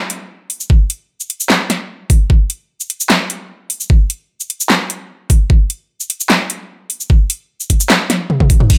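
A knocking, tape-warm electronic kick sits up front from 0.7 seconds, driving this chaotic, menacing half-time dubstep drop at 150 BPM in 4/4. The big-room dance drum kit enters at 0.1 seconds with a punchy snare, metallic hats, handclaps, shaker, toms and crash cymbal, all layered and produced, before a drum fill at 8.1 seconds. A digital ambience surrounds this short cut from a longer piece.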